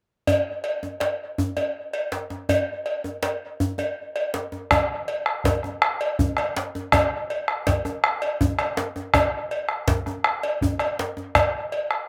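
Recorded dry in the open air, this earthy, driving clip of a West African drum ensemble rolls along in a straight 12/8. A metallic cowbell carrying a slapback echo sounds from a distance, and a djembe full of buzzing metal rattles joins it from the opening at 0.3 s. At 4.7 s a dark, deep bombo enters, sitting a little louder than the other two and grounding the pulse until the cut at 12.1 s.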